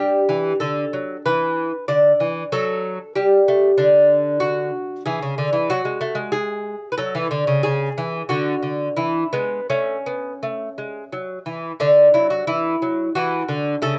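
In a flexible, rubato triple metre, this radiant and serene baroque-style classical dance, heard as an excerpt from a longer piece, features a solo lute that is fingerpicked, bright and delicate, with nylon double strings and some octave-doubled courses, placed up front in a dry, close 1970s-style studio recording that spans the full 14.0 seconds.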